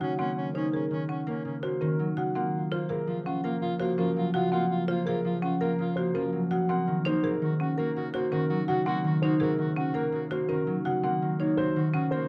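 From the first beat, a dark, long-sustaining baby grand piano carries the melody over ringing, up-front concert harp accompaniment, woody padauk marimba arpeggios struck with medium hard mallets, and a smooth, vibrato-tinged classical soprano saxophone second line, in a meditative, hypnotic minimalist classical pattern piece at 166 BPM in 6/4 that moves through Ab9sus4, Gbmaj7 and Ebm7 harmonies within a moderate large studio reverb and a dark production.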